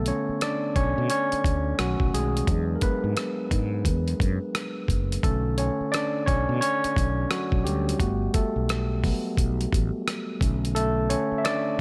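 A swung-sixteenth groove in 4/4 drives this soulful, smooth neo-soul R&B excerpt, carried by a dusty, sampler-style drum kit of compressed, tape-warm hi-hat, thumpy kick and rim click sitting up front, with a mellow fretless bass that sounds dark, round and direct underneath. Over them, an overdriven tine electric piano takes a solo for the full 11.8 seconds, bright and barky with a gritty edge through a combo amp, moving through chords such as Bm9, E7 and Gmaj9 under a light reverb.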